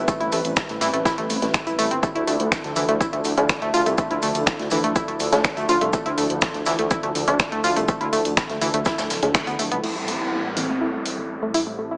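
A small-speaker sound with a moderate room reverb frames this hypnotic, driving melodic techno excerpt, where a muted, deep dub chord stab with chorus and dub echo pumps against a soft pad in the background, a rumbling detuned saw bass and a round, up-front analog pluck arpeggio that carries a filter sweep from 9.8 s. A punchy, tape-warm kick sits up front alongside an analog drum machine's hi-hat, finger snaps and crash, while a gritty, very quiet garage kit adds snare and shaker, with a band accent at 9.3 s. In the closing section the chords return from Dmadd9 to Am7, a thick unison lead with lush chorus and digital delay enters in the background, and an up-front downlifter runs to the end.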